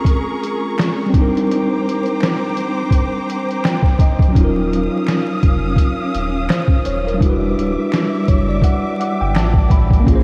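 Over a swung, muffled, pitched-down sampler-style drum groove with a thumpy kick, faint finger snaps and a clean, up-front tine electric piano that adds brief fills, this hazy, melancholic lo-fi hip hop excerpt layers lush, expressive bowed strings with vibrato sustaining minor-ninth chords, brings in a round, deep sub bass at 4.4 seconds, and soaks the dreamy mix in huge ambient reverb and vinyl crackle.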